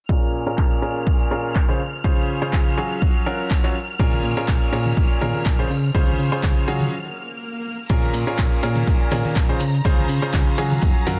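A bright, brilliant baby grand piano leads this energetic, soulful piano house clip in Bb minor at 123 BPM. Its riff sits up front with a worn, intimate character, audible action noise, short sustain, digital delay, sidechain pumping and a filter sweep through the opening section. Behind it, a distant, lush violin section holds sustained chords with expressive vibrato, also pumping under a low-pass filter. A punchy electronic kick anchors the groove, joined by a drum machine's handclaps and filtered hi-hats, while the chords move between Bbm7, Dbmaj7 and Gbmaj7. At 4.0 seconds a round, dark FM bass with a fast attack enters alongside tambourine and congas struck with hard hands in a large room. A break at 6.9 seconds carries an electronic swell, and from 7.9 seconds a very quiet, dry soul drum kit with a rolled-off top adds hi-hat and snare beneath a dense, heavily limited mix with light small-room reverb.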